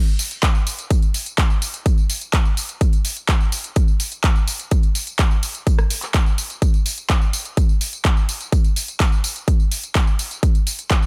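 An emotional, euphoric EDM drum passage at 126 BPM in straight 4/4 opens at 0.1 s with a layered, overdriven big-room dance kit of handclaps, metallic hi-hats, rim clicks and tambourine, joined at 0.4 s by a punchy, up-front electronic kick with its own overdrive, all set in digital ambience in this short cut from a longer piece.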